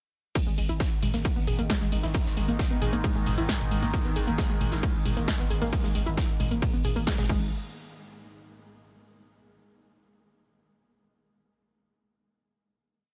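A straight four-on-the-floor pulse drives this short, complete piece of peak-time techno, with an overdriven, heavy electronic kick sitting up front from 0.4 seconds, when the track drops straight in. Around it, a punchy, layered techno kit programs hats, shaker, backbeat snare, low tom and crash with its own grit of overdrive. Deeper in the mix, an oversized, low-tuned acoustic kit plays a looped and edited breakbeat with a fat, saturated snare and a big, pumping room. A growling, buzzy 808-style bass rumbles low between the kicks, while a warbling, lo-fi, nasal pluck repeats a 12-step sequence that drifts against the bar, colored by chorus, overdrive, pumping and dub echo. From 1.2 seconds an evolving, detuned analog drone sustains underneath with chorus and phaser, and everything gives way to a final hit at 7.5 seconds in an intense, industrial, dry-sounding mix.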